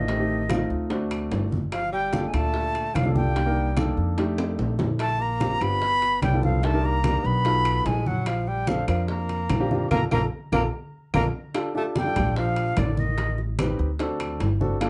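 A danceable, sophisticated Afro-Cuban jazz excerpt in Bb major, at 147 BPM in a straight 4/4, opens with flute, tenor saxophone, grand piano and upright bass together, and congas, bongos and timbales join almost at once. The silver concert flute carries the melody up front, its pure, tongued metal tone shaded with expressive vibrato and a plate reverb. Beneath it, the warm tenor saxophone adds a jazz-style second line with scooped notes and a smooth top. The piano sits up front, its short-sustained chords moving through extended jazz harmony, and the pizzicato upright bass on steel strings sounds woody and prominent. In the background, low-tuned, thick-skinned congas sound distant and roomy beside tight, high-tuned, vintage bongos and softly heard claves, while ringing metal-shell timbales ring out in a live room. Drum fills and a band accent lead into a new section at 11.5 seconds, and the flute and saxophone stop at 13.4 seconds, leaving piano, bass and percussion to close under a light reverb with a soft, rounded top.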